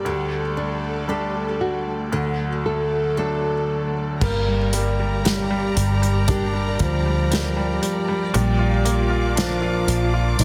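A dark, full-bodied nylon-string guitar carries the thumb-plucked melody of this longing, heartbroken pop ballad, joined from the first moment by an up-front, brilliant grand piano with audible action noise, a lush, bowed symphonic string section, and a fingerpicked flamenco guitar whose arpeggios, with finger squeak, are echoed by delay. At 4.2 seconds, as the harmony moves from D to G minor, a round, foam-muted electric bass and an acoustic drum kit with dark cymbals, a punchy kick and bundle sticks enter. Light small-room reverb surrounds a dense, heavily limited modern master in this cut from a longer piece.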